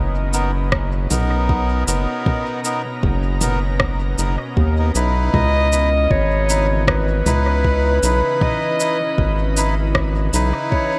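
A warm clarinet carries the melody from 5.3 seconds, its solo line wrapped in dub echo and floating over a hazy, meditative ambient dub groove at 78 BPM in 4/4 with a gentle swing on the sixteenths. Beneath it, a round analog bass sits up front with a deep, mellow tone and tube saturation, holding low notes across the short excerpt. A soft, organ-like pad sustains pure, calm chords in the background with ensemble chorus and its own reverb, moving from Bmaj7 to C#m9 as the clarinet enters. Reedy, nasal melodica stabs pass through a low-pass filter and dub echo, while an organic electronic kit of rim click, shaker and toms, also echoed, sits alongside a soft, tape-toned electronic kick. Light digital ambience gives the whole mix an airy, unhurried space in C# dorian.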